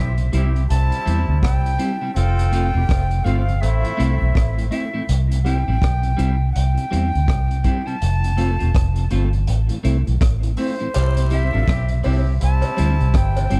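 Uplifting and laid-back, this short roots reggae passage moves in four with a gentle swing on the sixteenths, cycling through C, F and A minor. A breathy, bright concert flute carries the melody from start to finish in a straight, tongued and unsteady tone, touched by tape echo. A warm horn section plays a distant, roomy second line with light vibrato, dropping out at 4.7 seconds and returning at 10.9 seconds alongside a cowbell and jawbone-type rattle set back in a large room. Underneath, a vintage foam-muted fingered electric bass sits up front with a round, amped sound, while a crunchy breakbeat kit of hi-hat, kick and rim click adds a punchy, saturated, gritty feel with a rolled-off top. A clean, twangy picked electric guitar and a mellow tonewheel organ, in the background with key click and slow rotary speaker, fill out the accompaniment, both with tape echo. Studio reverb wraps the whole in a dark production.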